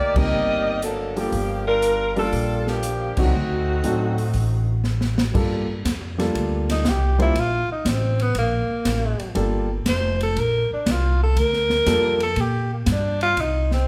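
A saxophone section with a soft attack and vibrato opens this brassy, dramatic big band swing excerpt in G minor, sitting up front over a woody pizzicato upright bass, with a band accent striking at 0.1 seconds. A baby grand piano with long sustain and a polished, airy drum kit join almost at once. The kit's punchy kick, medium-tuned snare, hi-hat, ride and crash drive a 120 BPM swing over Gm7 and D7b9 harmony. After a drum fill, the second section begins at 5.3 seconds, and a warm tenor saxophone takes a solo from 6.7 seconds, full of subtone and scooped notes with a punchy yet roomy tone. Bass and drums carry on under the solo as the harmony moves to Cm near the end, and a large studio reverb places the whole band further back in a wet room.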